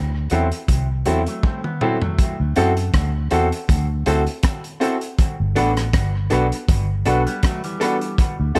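A round, foam-muted fingered bass opens this romantic, sweet lovers rock reggae excerpt at 80 BPM in G major. It is quickly joined by a crunchy, gritty breakbeat kit with a punchy kick that sits up front, an intimate grand piano with audible action noise, and slightly broken-up guitar stabs through a small old amp with dub echo. A bright, twangy envelope-filtered guitar plays arpeggios from 1.3 to 2.4 seconds and again from 7.1 seconds. Everything sits in light studio reverb as a drum fill at 1.4 seconds leads into the second section.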